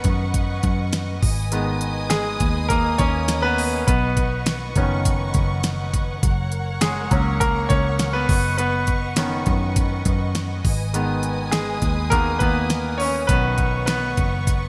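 A bright, brilliant concert grand piano leads this uplifting piano-driven pop piece in B major at 102 BPM, its polished tone sitting up front over chords moving through Badd9/F#, G#m, Badd9 and F#. A punchy, round muted electric bass and a layered electronic pop drum kit with a knocking kick, fat snare and crisp hats drive the straight 4/4 groove, while a soft-attack bowed string section holds smooth, intimate sustained chords above. The bright 1980s-style digital production is bathed in a lush hall reverb, and the 14.7-second passage is cut from a longer piece.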